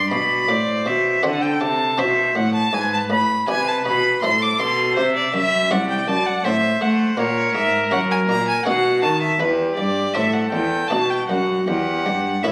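A straight, dance-like triple metre at 81 BPM carries this radiant baroque-style sonata movement, cut from a longer piece and settling into E minor from 5.0 s. A solo trumpet, clear and smooth at the top with a light vibrato in classical style, sings the melody, while a single bowed violin, rich and even with vibrato, sits up front as the second line and climbs highest of the four. A focused, bowed cello with vibrato anchors the bass, also placed up front. A buff-stop harpsichord in the Flemish style fills out the continuo from the background, its plucked, muted tone dry and lute-like. The sound carries a moderate recital hall reverb with added club reverb and compression, captured on a phone in the room.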